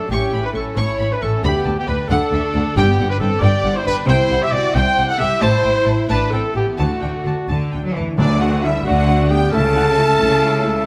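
A clear, up-front trumpet delivers stabs in this triumphant, adventurous heroic film-score cue in 6/8, as a dark, lush violin section sings the melody with vibrato above a second violin line, background violas, ringing harp arpeggios and a rich bowed bass of cellos and double basses, while very quiet, round timpani strokes appear; at 8.2 s mellow, punchy French horns sustain chords alongside a distant, soft-attack clarinet and a pure flute, and a roomy cor anglais with light vibrato joins at 8.9 s, all set in a moderate recital-hall reverb.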